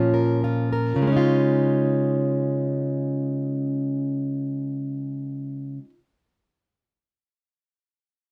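Pop in free time, this brief fragment of a longer piece carries a heartfelt, carefree mood. A fingerpicked, plugged-in steel-string acoustic guitar plays accompaniment on its own for the full 6.0 seconds, ranging from Bb2 to Bb4. The jumbo body gives the sound a full, warm depth, and its fresh strings add a lively sheen. In the opening second the playing slows on a Bb minor chord, then settles onto a Dbadd9 at 1.0 seconds for the remainder. Close, detailed microphones and very little reverb place the guitar up front and intimate.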